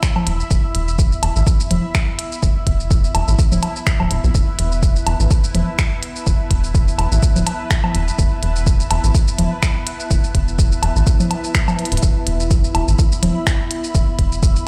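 This hypnotic, quirky minimal techno cut, taken from a longer piece, opens at once with a deep, up-front electronic kick and a produced click kit of finger snaps, clicky hats and shaker, moving at 125 BPM in 4/4 with a light 16th-note swing. An airy, breathy pad with a vintage warble fades in across the whole passage, while a bright, bubbling texture of detuned sawtooth steps through random filter moves, bathed in chorus and its own reverb; both pump against the kick. Congas and woodblock arrive at 0.2 seconds, their analog tone re-recorded in a large room and trailed by tape echo. At 0.3 seconds a rubbery, hollow square-wave bass joins, bouncy and dark with a resonant filter pluck, sitting up front and also pumping with the kick. A drum fill marks 11.8 seconds, and the whole mix sounds as if played on a big sound system in a bare stone room.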